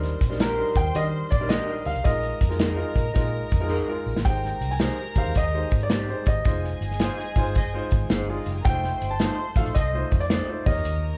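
Uplifting and warm, this swung 109 BPM 1960s-style soul piece in Eb major sets an intimate grand piano melody, its action noise audible and notes sustaining long, over woody upright piano chords, a round, foam-muted fingered electric bass, a dry, dark drum kit sitting up front, jingly tambourine, twangy, slightly broken-up guitar stabs through a small old amp, and a floating, distant bowed string section, with a dark, vibrato-laden jazz horn section joining in the background at 5.4 seconds. All are heard live in one roomy studio, and a drum fill at 3.7 seconds leads into the second section.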